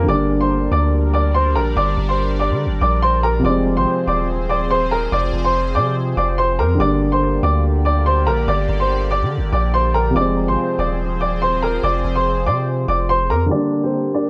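A clear, woody upright piano carries the menacing melody up front in this ominous half-time hip hop excerpt, joined by a dark, mellow concert grand in the lower register, both pianos low-pass filtered and trailed by analog delay, while a detuned sawtooth pad with chorus sustains shifting Gm and Fm chords and a deep, sine-toned 808 bass holds long decaying notes until 13.5 seconds, the whole mix echo-heavy and muffled by a low-pass filter within a small room ambience.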